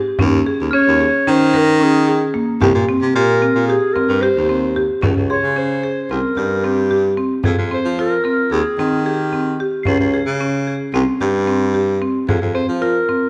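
Set in a dark, reverberant recital hall, this restless, hypnotic excerpt of contemporary chamber music moves in 9/8 at 223 BPM (eighths) in C phrygian. Woody padauk marimba arpeggios and a clear, up-front baritone saxophone bass line, jazz-styled with light vibrato, subtone and scooped notes, drive the piece alongside a compressed, saturated frame drum struck with hard hands. A classical clarinet carries the melody, while a bell-like glockenspiel rings faintly in the background, briefly at 0.7 s and again from 5.3 to 10.5 s, as the harmony shifts from Eb7sus4 and Cm to Db5, C5 and Fm.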